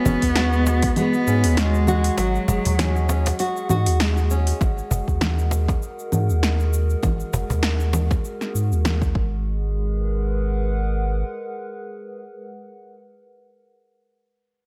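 Organic downtempo at 99 BPM in G# minor, hypnotic and meditative, opening with an up-front, rich, bowed cello melody with vibrato and delay that lasts only until 3.4 seconds, alongside fingerpicked nylon-string guitar arpeggios with finger squeak and delay. A warbling, lo-fi pad with chorus and a nostalgic, dark tone holds sustained chords with sidechain pumping, while a round sine sub bass, also pumping, sits up front. Overdriven deep house drums with punchy snare, metallic hats, congas and shaker sit beside a woody, close and dry cajon, and the deep electronic kick drops out from 2.2 to 4.6 seconds before returning in this excerpt.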